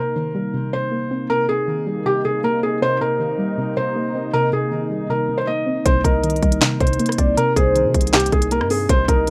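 A felt-muted upright piano carries the melody up front in this brooding, hard-hitting trap excerpt in C minor, its soft, intimate tone edged with audible action noise over a single Cm7 chord at 158 BPM in a half-time feel. A round, dark chorused pluck and a moody detuned analog pad with a slow attack fill in beneath it. At 5.9 seconds a produced electronic trap kit arrives up front with a hard-clipped kick, sharp snare, crisp hats, handclaps and rim clicks, along with a deep, mellow 808 bass sitting further back, and at 6.0 seconds a velvety chorused synth lead with vibrato and digital delay adds a second line, all in a rough home-demo mix with light reverb.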